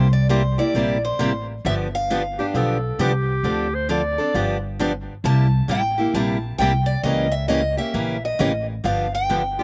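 Two picked steel-string acoustic guitars and a pizzicato upright bass open this charming, swinging excerpt of acoustic jazz manouche at 133 BPM: a boxy parlour guitar carries the melody with slapback echo over a bright concert guitar's chords, while the woody, thumpy gut-string bass anchors changes that move from C7 through Dm7 and C#dim7 to G7. A breathy clarinet with vibrato and scooped notes adds a smooth second line from 2.4 to 4.8 seconds and returns at 9.6 seconds. The sound is dry and up front, captured outdoors with little reverb.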